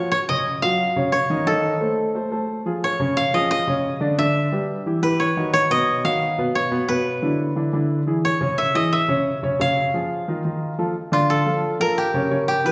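Lively and danceable, this jazz piece, cut from a longer performance, sets a woody, fingerpicked koto melody up front over a natural-sounding baby grand piano accompaniment, with both instruments carrying a warm tone. The koto's dry, plucked attack sits within the wet reverb of a recital hall, and the harmony moves through rich colours such as F7, C#add9 and D#7b9b13. At 11.0 seconds the music shifts to a new section on a Dmmaj7 chord, where the koto takes a brief solo.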